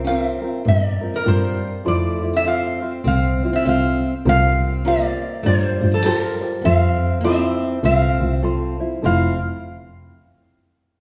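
A relaxed swing on the eighth notes at 100 BPM in 4/4 sets a dreamy, easygoing Hawaiian mood in F major, in a passage cut from a longer piece. Up front, a metal-body resonator slide guitar carries the melody with a nasal, metallic edge, played with fingerpicks and slide. Beneath it, a picked plugged-in steel-string acoustic guitar adds a full-bodied second line with the sparkle of fresh strings, while a tenor ukulele, thumb-plucked and mellow, fills in a light accompaniment. A bowed double bass, also up front, anchors the low end with a rich, floating tone, soft in attack and smooth on top. The harmony moves between C7sus4 and Fmaj7, and the whole group sounds as though heard from further back in a reverberant recital hall.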